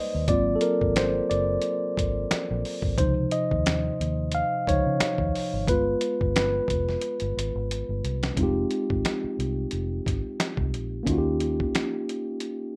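A rough home-demo mix with light reverb carries this soulful, smooth neo-soul R&B excerpt at 89 BPM in 4/4, with a gentle sixteenth-note swing. A mellow tine electric piano, clean and up front through its built-in speakers, takes the lead over Ab13, Dbmaj9 and G7b9 until 8.4 s. Beneath it sit a dark, round, punchy foam-muted fingered bass and a gritty, compressed sampler-style kit of thumpy kick, medium-tuned snare, hi-hat and finger snaps, tape-warm and re-recorded in a large room, which plays a fill from 7.0 s. The second section moves through Fm7 and Eb9, and the bass stops at 11.6 s.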